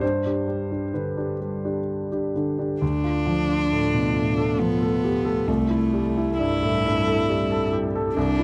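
In a rubato 3/4 at 66 BPM with uneven beats, this intimate, hopeful neoclassical piece opens on a natural, deep-bassed concert grand piano accompanying over G, joined at 2.8 seconds by a single up-front cello playing sul tasto with light vibrato and a soft, airy bow as the harmony moves to Dm, and from 3.9 seconds a very quiet, ethereal pad of detuned sawtooth and triangle tones with a noise layer, ensemble chorus and its own reverb sustains mellow chords through Am7/C, all within a dry, close 1970s-style studio sound.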